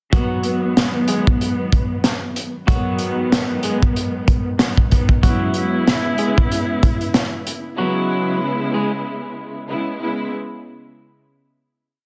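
A crunchy, saturated breakbeat kit drives this gritty, tough boom-bap hip-hop piece with a hard kick and backbeat snare, its dark, rolled-off top sitting up front with little reverb before it drops out at 7.6 seconds. Beneath it, a lush bowed string section repeats chopped chords like a sampled loop, smooth and full of vibrato, moving from G#m7 to C#m7 and carrying on alone to the close at 10.3 seconds. A slightly broken-up electric guitar loops a short fingered melody doubled in octaves, touched with tape echo, all within a dense, heavily limited modern master.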